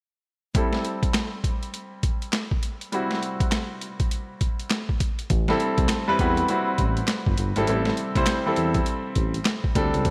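A bright, 1980s-style digital production bathed in a lush hall reverb frames this slick, bouncy new jack swing excerpt, cut from a longer R&B piece and riding a swung sixteenth-note feel over an Am7 chord. A clear, polished baby grand piano and a gritty, pitched-down, sampler-style drum kit with a thumpy kick, high-tuned snare, handclaps and hi-hat sit up front from 0.5 seconds. At 5.3 seconds, after a brief break in the harmony, a smooth, nasal, detuned synth bass with vibrato joins to carry the groove.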